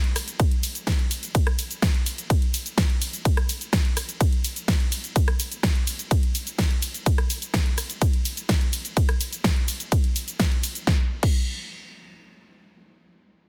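Anthemic and powerful, this EDM passage cut from a longer piece drives at 126 BPM in a straight 4/4, opening on a drop that runs to 10.9 seconds, where a layered, up-front big-room dance drum kit with a huge snare, crash and ride cymbals, hi-hat, rim click and shaker is joined at 0.4 seconds by a punchy, layered electronic kick, all captured dry in a dense, heavily limited modern master.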